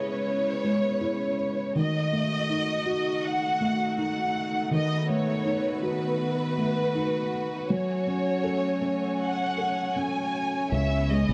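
Longing and heartbroken, this short pop excerpt moves at a slow 80 BPM in a straight 4/4. A violin section carries the melody between B4 and G#5, its bowed tone lush and expressive, with vibrato and portamento, and it sits up front. Beneath it, a felt-muted upright piano plays soft, mellow accompaniment with an intimate, thick-felt sound, while a string section holds woody sustained chords a little lower in level. A round, direct fretless electric bass arrives only at 10.7 s, just as the harmony returns to C#m7 after passing through D#dim, B7/D#, and F#madd9. Light studio reverb and a dark, warm production shape the overall sound.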